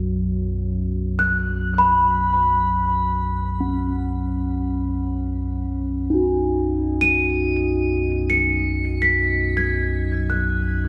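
A deep, rumbling drone opens this spacious, calm stretch of free-time world meditation music in B major pentatonic, tuned to A4 = 437 Hz, joined at 1.2 seconds by a sweet, bell-like large celesta melody glittering high above through shimmer reverb and analog delay, and at 3.6 seconds by a bright, metallic bronze singing bowl with slow beating, all floating in an echo-heavy chamber.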